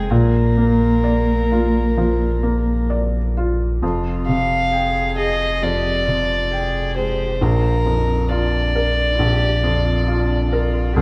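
Hopeful and tender, this neoclassical piano and strings excerpt drifts in a loose 4/4 with uneven, rubato beats. A single violin carries the melody up front, bowed sul tasto with a dark, pure, floating tone and a smooth top, touched by tape echo. Beneath it, one cellist plays a woody second line with vibrato, also sul tasto, sitting close yet in the background. A felt-muted upright piano sits forward with soft, mellow, intimate accompaniment of short sustain and thin felt, while a round sine sub bass holds deep, sustained low notes with a fast attack. The harmony moves from Bb to Fmadd9 at 3.8 seconds and returns to Bb at 7.4 seconds, framed by a moderate recital hall reverb.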